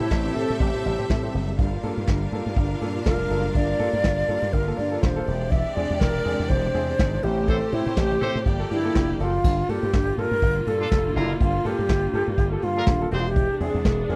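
Glamorous and driving, this disco excerpt at 122 BPM in G dorian puts a breathy alto flute up front with a solo melody through the first 9.4 seconds, over a punchy slap bass run through an envelope filter, a vintage brush kit with a punchy kick and rolled-off top, and a dark, intimate baby grand piano with audible action noise in the background. A clear, focused string section plays a second line until 9.4 seconds while a rich, lush string section holds sustained chords beneath, and a tight horn section adds vintage stabs from 7.5 to 13.3 seconds, joining a band accent. The sound is dry and close, in a 1970s studio style, with chords moving through Am7, Gm9 and E7alt before closing on Eaug7.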